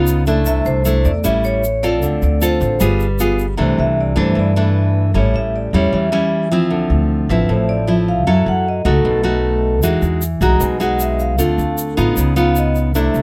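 A dry, close and detailed recording captures this short cut from a longer bossa nova in C major, romantic and sophisticated at a straight 154 BPM in 4/4. An up-front, full-bodied fingerpicked nylon-string guitar and a woody, dark pizzicato upright bass play throughout, while a grainy egg shaker sits low in the mix until 3.6 seconds and returns at 9.8 seconds. A ringing, metallic vibraphone played with medium mallets and motor off carries the melody from 0.5 seconds and takes a solo from 3.6 seconds over lush changes such as C69, Dm9, Emaj9 and Db9.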